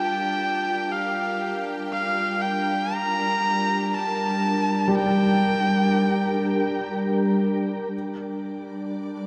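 Steeped in a dark cathedral-like reverb, this melancholic, serene ambient passage drifts in free time: a rich, vibrato-laden electric violin sings a smooth melody up front with shimmer reverb and diffuse delay until 6.9 seconds, over a glassy, chorused FM pad fading in with slow-attack sustained chords, soft felt-muted upright piano arpeggios echoing through ambient delay, and a bright, lush symphonic violin section that fades out in the background. The harmony settles from Gm7 to Gmadd9 at 7.9 seconds, and a nasal, organ-like drone joins at 8.5 seconds.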